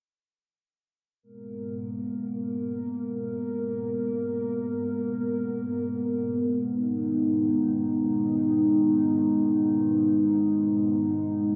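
A dark analog pad carries this brooding, aggressive drum and bass fragment in free time, entering at 1.2 seconds to sustain a G#madd9 chord in G# minor until 11.6 seconds. Its detuned, wave-folded blend of square, sawtooth, triangle and sine tones, with a sub octave beneath, rises on a slow attack, fades on a long release, and sits up front in a lush chorus. A long hall reverb of 3.2 seconds soaks the mix in a dreamy haze.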